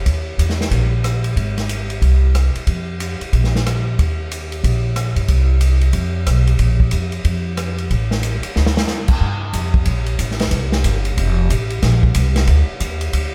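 The upright bass stands out first, plucked and woody with a thumpy steel-string tone, sitting up front and spanning F1 to G2 across this short excerpt cut from a longer big band swing piece. It plays from 0.0 to 13.3 seconds in B-flat major at a brisk 184 BPM in 4/4, with a swing feel on the eighth notes that gives the music a joyful, energetic lift. Alongside it, a swinging big-band drum kit, also up front, brings an airy, polished hall sound with dark cymbals, a medium-tuned snare and a punchy kick, using crash, ride, hi-hat and rim clicks. A drum fill from 8.6 to 8.9 seconds leads into a new section at 9.2 seconds. The overall sound is dry, with little reverb.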